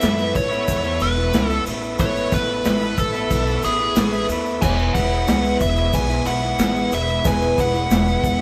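From the first beat, a nasal lead guitar with a parked wah carries the melody up front, its overdriven, dark tone riding over a full band playing together in one room in this nostalgic, hopeful fragment of folk rock and heartland rock. The tempo is a straight, unhurried 91 BPM in 4/4, with the harmony resting on Asus2 before moving to E at 4.6 seconds. A vintage kit sits prominently with a punchy kick, medium-tuned snare, hi-hat and crash, its sound muffled and lo-fi with a rolled-off top, while a woody pizzicato upright bass on steel strings holds the low end. An electric guitar through a small old amp plays a slightly broken-up, compressed riff, and a picked twelve-string acoustic shimmers with octave doubling in the background. Very quiet underneath, a bright tonewheel organ sustains chords through a slow rotary speaker with chorus vibrato and key click, a mellow upright piano adds soft accompaniment, and a grainy egg shaker sits at the back, all wrapped in light reverb.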